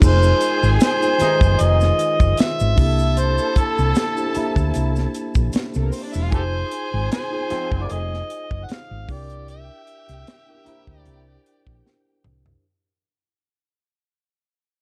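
Lush 1970s-style soul at 76 BPM with a light sixteenth-note swing, this smooth passage cut from a longer piece moves between Fm7 and C7 and fades out across its whole length. An overdriven, gritty harmonica carries the melody up front, its jazz-style solo line full of scooped notes, tongue slaps and light vibrato. A distant studio violin section adds a bowed, expressive second line with vibrato and portamento, while a mellow tine electric piano heard through its built-in speakers supplies clean accompaniment, and a very quiet woodwind section holds dark, roomy chords until 6.3 s. A round, amped hollow-body bass sits up front beside a tight, dry funk kit with a high-tuned snare, joined by a grainy tube shaker in the background until 6.3 s. A clear trombone section enters at 1.2 s with background stabs, and the drums close on a fill from 11.8 s, all set in a dark production with light studio reverb.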